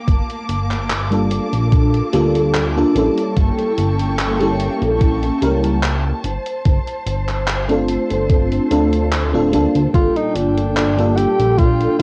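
A cassette-worn home recording with light reverb carries this melancholic, woozy vaporwave fragment in G minor at 73 BPM, where clear, sustained studio strings and a dark, chorused synth bass sit alongside a thumpy, gritty sampler kick and gated drum-machine handclaps and hi-hat, while a lush, phased FM electric piano with a soft pad layer enters at 1.1 s and a breathy, whispered tenor saxophone with scooped notes slips in at 9.9 s.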